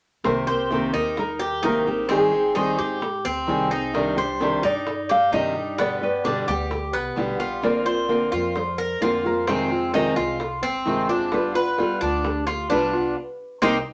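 A bright, metallic Cuban tres with doubled strings sits up front, playing arpeggios from 0.5 seconds in this sultry, warm excerpt of Cuban son and guajira. A thumb-plucked classical nylon-string guitar carries the melody over a boxy parlour steel-string guitar, fingerpicked with audible finger squeak, while a woody, thumpy gut-string upright bass played pizzicato and tight, high-tuned vintage bongos in the background fill out the moderate studio reverb. The chords circle back to Cm7 as the band lands an accent at 13.2 seconds.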